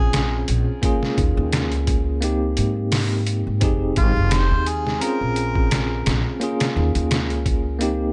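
A rolled-off, small-room sound frames this brooding, hypnotic trip hop piece at 86 BPM with a light swing, where a mellow harmonica with scooped notes, vintage sampler grit and tape echo carries the melody until 6.1 seconds over bell-like tremolo electric piano chords moving through Bbm9, Eb7sus4, Abmaj9 and Fm9, a woody pizzicato upright bass with tube saturation, and a compressed, pitched-down sampler drum kit with a thumpy kick and medium-tuned snare.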